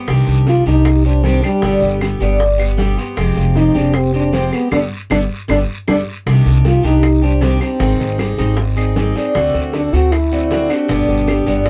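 Danceable and warm, this Cuban son and guajira excerpt moves at 155 BPM in C harmonic minor, with a smooth-topped classical-style French horn carrying the solo melody from 0.5 seconds over thumpy, gut-strung pizzicato upright bass up front, a picked steel-string acoustic guitar with finger squeak, background arpeggios from a metallic double-strung Cuban tres, tight high-tuned bongos, woody vintage claves and a raspy close guiro, all in a dark production with light reverb and a band accent with a drum fill before the repeat at 6.3 seconds.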